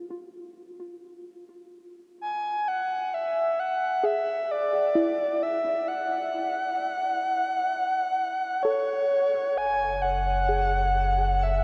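Ambient excerpt in F# minor at 65 BPM, reflective and spacious, opening with a soft, round pluck playing arpeggios through chorus and tape echo, joined at 2.2 seconds by a breathy, flute-like synth lead carrying the melody up front with a vintage warble and vibrato. The harmony moves from E9 to A6 before settling on F#m at 9.6 seconds, where a deep sine sub bass and a very quiet, twinkling granular texture with an octave-up shimmer enter. Everything sits in a huge, wet reverb with a long 8.4-second tail.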